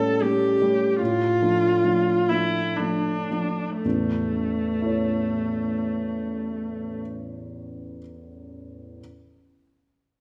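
Set in a rubato 3/4 that drifts between 53 and 76 BPM, the music slows through its opening 3.8 seconds. This tender, serene romantic classical duo for viola and baby grand piano sits in A major, tuned a touch high to A4 = 445 Hz. Bowed by a single player, the viola carries the melody between A3 and A4 with a smooth, even vibrato, while the intimate piano accompanies from deep A1 up to C#5, its long sustain and audible action noise lending a natural closeness. The harmony moves from A7 to Dm/A before resolving onto A at 3.8 seconds, opening a second phrase. The viola falls silent at 7.0 seconds, letting the piano ring on alone until 9.0 seconds inside a wet recital hall reverb that adds a soft, glowing bloom. This is a brief cut from a longer piece.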